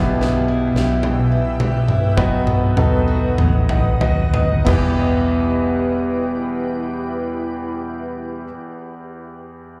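Melancholic and heartbroken, this short cut from a longer pop ballad in E minor moves at a slow 45-56 BPM in a straight 4/4, heard as a live gig through a venue's PA with club reverb. A concert grand piano sits up front with long sustain, deep bass and audible action noise, carrying the accompaniment with a slapback echo until the end at 9.8 seconds. Behind it, a picked steel-string acoustic guitar plays arpeggios with its own slapback echo and an auditorium feel. A shimmering, ethereal pad with an octave-up shimmer, detuned unison and granular texture holds sustained chords through chorus and built-in reverb. A dark, foam-muted fingered electric bass gives a round, amped low end, while a huge arena drum kit with a fat snare and boomy kick plays a fill across the opening as the tempo slows, dropping out at 5.0 seconds. The harmony moves from Em/B to B, then settles on Em at 4.7 seconds as the second section begins.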